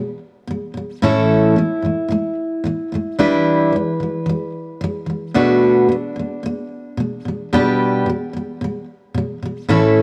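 Reflective and wistful, this pop excerpt features a lone picked steel-string acoustic guitar, full-bodied and jumbo in tone, sitting up front across its full ten seconds at 111 BPM with a light sixteenth-note swing. The guitar moves through G/B, A, Em7 and Bm7 before settling back on G/B, spanning A2 to B4. The sound is dry and close, in a 1970s studio style, with light reverb and a touch of room ambience.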